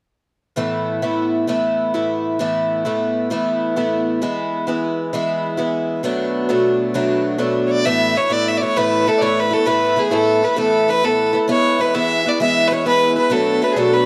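A dark small-room recording opens this rollicking excerpt of a Celtic slide in 12/8 at 132 BPM, where a shimmering, octave-doubled picked twelve-string guitar with audible finger squeak picks through Asus2, E and Bm7 from 0.6 seconds, joined at 7.7 seconds by a clear, earthy bowed fiddle with light vibrato, plate reverb and tape echo that takes up the melody.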